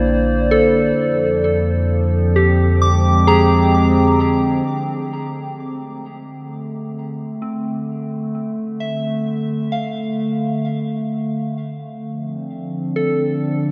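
A huge, wet reverb washes over this melancholic, spacious ambient excerpt in D minor at 65 BPM, where a warbly, detuned tape-like pad holds dark chords up front while a pure FM synth bell spins soft arpeggios through chorus, phaser and delay, a round sine sub bass anchors the opening until 4.6 seconds, and a mellow analog drone hums in the background through the opening and returns near the end, while a filter sweep on the pad and a fade-in on the bell carry the music from 4.7 seconds to its close.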